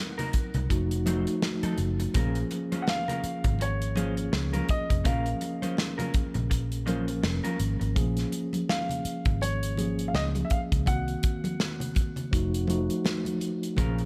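Bittersweet and cinematic, this 14-second excerpt of lush 1970s-style soul in Bb minor sways at 83 BPM with a light 16th-note swing, as a polished grand piano carries the melody over mellow tine electric piano, a punchy up-front studio drum kit, very quiet bright congas, a dark, round foam-muted bass, and a slightly broken-up, lo-fi guitar riff with spring reverb that drops out at 7.8 seconds before a brief return at 13.8 seconds, all moving through Cm7b5, F7b9 and a long stretch of Bbm7.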